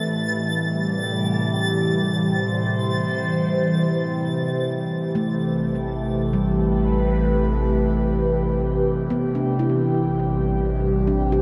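A huge, wet reverb with a tail near 7.9 seconds surrounds this dark ambient excerpt, cut from a longer piece, which moves at 76 BPM in a straight 3/4 in A minor, tuned slightly low to A4 = 437 Hz. The mood is serene and melancholic. Up front, an airy, breathy pad of detuned triangle and sawtooth layers with a noise layer holds sustained chords from A2 to C5, its slow attack and long release shaded by chorus and phaser as the harmony moves from C/A to Am9 at 4.8 seconds. At the opening, a twinkling granular texture high on A6 adds an FM sparkle with octave-up shimmer and its own reverb, playing until 4.8 seconds. From 5.2 seconds, a mellow handpan of nitrided steel, played with soft fingertips and close-miked, rings out meditative arpeggios between G3 and G4 in the background, carried by tape echo. Just after, an ominous, rumbling drone on A1 enters underneath, nasal and ring-modulated, and holds with the pad and handpan to the end.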